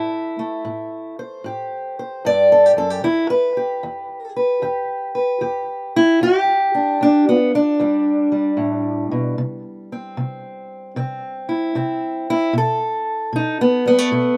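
Smoky and mournful, this short excerpt of acoustic country blues moves at an unhurried 76 BPM in E minor, with a swung eighth-note feel in 4/4. A lone fingerpicked steel-string parlour guitar carries the whole passage, its dark, boxy tone sitting up front as it ranges from low E2 to D5 across a progression of Am7, Em7, C and B7. Recorded outdoors with little reverb, the sound is dry, with the B7 arriving at 12.5 seconds before the cut.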